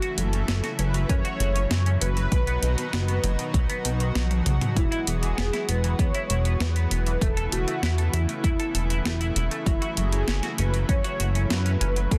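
Dense and heavily limited with light reverb, this dreamy, nostalgic synthwave excerpt sets a round, brassy synth lead with tape echo over a lush, detuned unison pad carrying 12-bit sampler grit and sidechain pumping, a bright, clean semi-hollow electric guitar riff, a glossy pulse-wave synth bass that enters at 0.2 seconds, an overdriven 12-bit drum machine with a fill at 4.2 seconds, and a punchy, up-front electronic kick that joins at 1.1 seconds.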